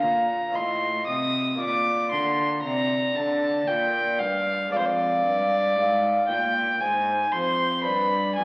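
Grave and solemn, this brief cut from a longer baroque-style sonata movement in slow 3/4 at 58 BPM sets an up-front, reedy gut-string violin melody over a distant, airy wooden flute second line with vibrato, a close, bowed period-style cello bass, and a round French-style harpsichord accompaniment in the background, all moving from Bb through F7/A and Dm7b5/F to a G at 7.8 seconds, heard through a recital-hall reverb and the crackle of a very old 78 rpm record.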